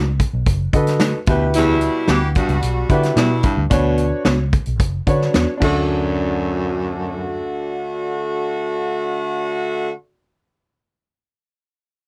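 A straight 4/4 groove at 110 BPM drives this uplifting, danceable slice of 1960s-style soul in D major, with a punchy, up-front drum kit from a small room that drops out at 5.7 seconds while round, foam-muted fingered bass and dark, compressed guitar stabs in the background carry on. A woody upright piano with long sustain plays accompaniment, and a breathy, intimate baritone saxophone riff with vibrato and scooped notes enters at 1.3 seconds, joined by a close-miked saxophone section on a second line. Light reverb and a cassette-tape sheen give the short cut a vintage feel as the chords move from B7 through Emadd9/D and Bmadd9 to D.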